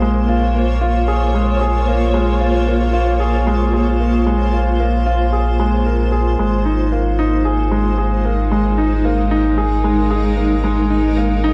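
A clear concert grand piano stands out up front, playing a worn, present riff with short sustain and a deep low end, its notes carried by tape echo throughout this 11.5-second cut from a longer electronica piece. Beneath it, a round, sine-like sub bass holds the bottom with a fast attack and long sustained notes, while a granular cloud pad spreads blurred, evolving sustained chords with a slow attack, long release and its own built-in reverb. The music sits in Bb minor at 113 BPM in a straight 4/4, moving from Bbm7 to Abadd9 at 6.4 seconds. A moderate echo chamber reverb with a digital ambience frames the dark, warm production. The mood is melancholic and moving, all three parts sounding together from start to finish.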